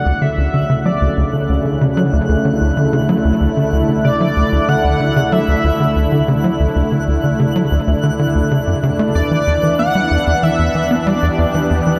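A steady, straight 4/4 pulse at 94 BPM drives this hypnotic, expansive slice of ambient, sequencer-driven space music, cut from a longer piece. The tight sequencer bass carries a punchy, saturated riff from 0.1 seconds, its dark sawtooth and square tones plucked by a fast-attack filter and treated with lush chorus and tape echo. Above it, a thick, detuned unison pad holds sustained chords with a soft attack and nasal brightness, moving from Dmaj9 to Em7 at 9.2 seconds. A shimmering pulse-width lead sings a retro melody between D5 and F#5 with vibrato, ring modulation, chorus and tape echo, falling silent at 11.5 seconds. High above, a faint granular FM texture twinkles on F#6 with an octave-up sparkle and its own reverb, while the whole mix sits in a vast cathedral-like space with a long, wet tail.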